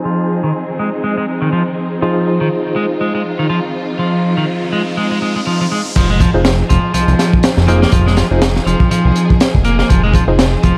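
Breakbeat cut from a longer piece, gritty and raw at 122 BPM in F minor with a swung sixteenth feel, opening on an Fm7 as lush bowed strings hold sustained chords with 12-bit sampler grit and sidechain pumping, a barky, overdriven tine electric piano plays stabs through fast tremolo and tape echo under a filter sweep, and an up-front, dark clean electric guitar picks a low riff coloured by overdrive, low-pass filtering and echo. An electronic riser builds from 3.4 seconds into a drop at 6.0 seconds, where a fat, detuned analog bass of sawtooth and square tones with ring modulation arrives alongside a crunchy, saturated breakbeat kit with a punchy kick, high-tuned snare and dark cymbals. The echo-heavy mix sits in a small room with light reverb, vinyl crackle and a low-pass filtered top.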